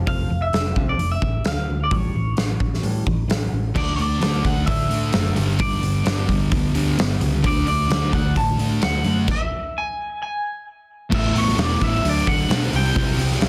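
A straight 4/4 pulse drives this anthemic, bittersweet fragment of quiet-loud alternative rock, cut from a longer piece. A big rock drum kit sits up front in a big room, with a fat snare, punchy kick, crash and hi-hat. A round, hollow-body short-scale electric bass plays the low end with a dark, amped punch. A bright, clean electric guitar carries the high melody through phaser and tape echo, while a full-bodied jumbo acoustic guitar fingerpicks arpeggios in the background until 7.4 seconds. At 3.7 seconds a pair of thick fuzz guitars enters with a distorted, picked riff, also set back in the mix, and the harmony moves from F5 and A7 through D and G before a stop from 9.3 seconds. The sound is dry, dense and heavily limited in a modern master.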